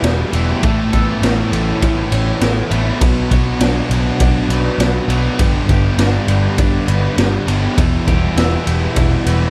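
A dreamy, reverb-soaked mix in a lush hall sets a hazy tone for this short fragment of shoegaze-tinged dream pop rock, moving at 101 BPM in a straight 4/4 in G lydian over Em, Aadd9, Bm and G. Up front, a raw garage drum kit with a punchy kick, gritty saturation and a rolled-off top plays alongside a dark, round, foam-muted picked bass. Three guitars play riffs in the background: a thick fuzz guitar with ensemble chorus, a dark semi-hollow guitar with reverse reverb, and a bright, double-tracked overdriven one, while a very quiet, clean, twangy guitar adds arpeggios.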